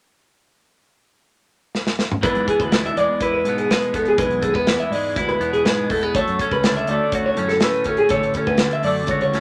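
A drum fill at 1.7 seconds opens this playful, wistful math rock and midwest emo excerpt at 122 BPM in a straight 4/4. At 2.2 seconds, two bright, twangy twelve-string electric guitars enter up front, one picking clean, compressed chordal accompaniment and the other higher arpeggios. With them comes a round, overdriven fuzz bass, all over the E7 chord before the harmony moves to Dmaj7 at 6.1 seconds. An airy studio kit with a punchy kick and medium-tuned snare drives the band, which sits in a moderate club reverb.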